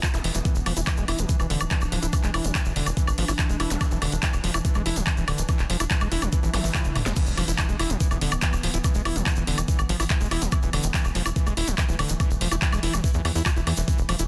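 A steady 143 BPM pulse anchors this intense, alien psychedelic trance excerpt, where a knocking, up-front electronic kick and an overdriven kit of cracking snare, bright hats, handclaps, toms, woodblock and crash join a grainy egg shaker, a tight, punchy sawtooth sequencer bass, a squelchy, resonant acid bass riff with distortion and digital delay, a morphing, warbling wavetable pad with chorus and sidechain pumping in the background, and very quiet zaps, a swell and an impact, with a drum fill from 6.5 seconds leading into the drop at 7.2 seconds in a dense, heavily limited mix.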